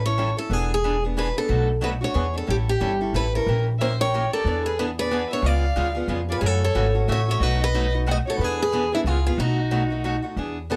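This short cut from a longer piece of lively acoustic string swing in the jazz manouche style opens with a picked steel-string guitar carrying the melody over a woody, thumpy pizzicato upright bass on dark gut strings, sitting up front. A second steel-string guitar joins almost immediately as accompaniment, its bright, boxy parlour tone carrying the odd finger squeak. The music moves in a swinging 3/4, and the changes pass through dominant sevenths, a diminished passing chord and minor sevenths. At 3.8 seconds a single bowed violin enters with a second line, close and expressive, with vibrato, soft attacks and gliding portamento. Its warm tone lasts until 10.2 seconds, while the two guitars and bass play on to the end under a light reverb.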